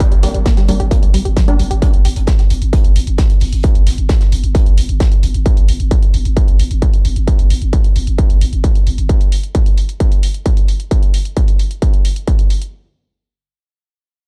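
Driving peak-time techno at 132 BPM in G minor, this excerpt has an industrial, relentless mood and a dark production set in a digital ambience. A distorted electronic kick sits up front, layered and re-recorded in a large room, with layered electronic hi-hats alongside, and a loose acoustic indie drum kit of hats and a medium-tuned snare sits in the background with a rolled-off top and high-pass filtering. A growling, buzzy 808-style bass on G1 enters at 0.1 s, saturated with overdrive and pumping against the kick, and drops out at 9.1 s. Across the opening 1.8 seconds, a tight detuned sawtooth synth riff carries a filter sweep with chorus and tape echo, while an aggressive, thick rave stab with a warbling vintage unison tone flashes bright with reverb and echo. A very quiet electronic downlifter sits underneath that opening. The kick carries on until 12.4 s, and the hats continue until the passage shifts into a new section at 12.7 s.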